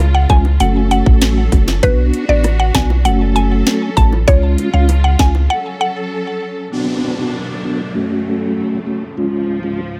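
Dancehall at 98 BPM in F# harmonic minor, sultry and tough, moving through a chord cycle of F# minor, B minor and C# with a straight 4/4 feel in this short cut from a longer piece. A punchy sine sub bass with a pitch-drop attack sits up front beside an electronic island pop drum kit of tight kick, sharp snare, rim click and metallic hi-hats, while very quiet, low-tuned bongos with soft hands add a saturated, compressed texture underneath. A woody, round FM synth pluck carries the mallet-like melody with chorus and delay, and a mellow, flute-like tonewheel organ with key click, chorus vibrato and fast rotary speaker supplies accompaniment almost to the end. Beneath it all, a lush, bowed symphonic string section holds sustained chords throughout, pumped by sidechain compression. The drums drop out at 5.3 seconds and the bass at 5.5 seconds for a break, after which the strings, organ and an electronic downlifter from 6.7 seconds carry the close, dry mix with little reverb.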